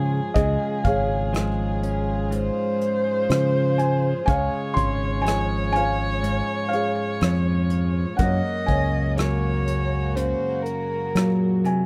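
Acoustic folk-pop ballad in Db major at a slow 61 BPM in straight 4/4, carrying an intimate, heartfelt mood through this short passage from a longer piece. A felt-muted upright piano sings the melody with a soft, mellow tone set in plate reverb, while a dark, woody solo violin adds a distant, bowed second line with vibrato that drops out at 11.6 seconds. Underneath, a clean, compressed electric guitar recorded direct picks out the accompaniment, and a punchy fingered electric bass sits up front as the strongest part in the mix. A studio string section floats far in the background with pure, soft-attack sul tasto chords, and a small-room brush kit joins at 0.4 seconds with tight kick, hi-hat and rim click. The harmony rests on Db before shifting to Gb at 8.2 seconds, all wrapped in a light reverb.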